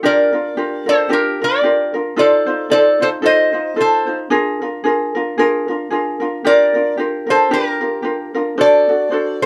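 A metallic, nasal lap resonator guitar, played with fingerpicks and slide, carries the melody up front in this relaxed, dreamy Hawaiian excerpt, entering at 0.1 seconds over a bright, light, thumb-plucked ukulele accompaniment with a gentle swing on the eighths, moving through chords from Bb6 to D7 in a moderate studio ambience.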